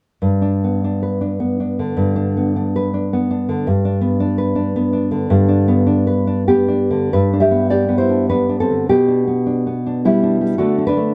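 A solo nylon-string guitar, thumb-plucked, deep and placed up front, opens this tender, nostalgic fragment of a romantic classical piece in a rubato triple metre, moving from G toward G/B and a closing D5 as a new passage begins at 7.1 seconds, all wrapped in light reverb and a dark, warm production.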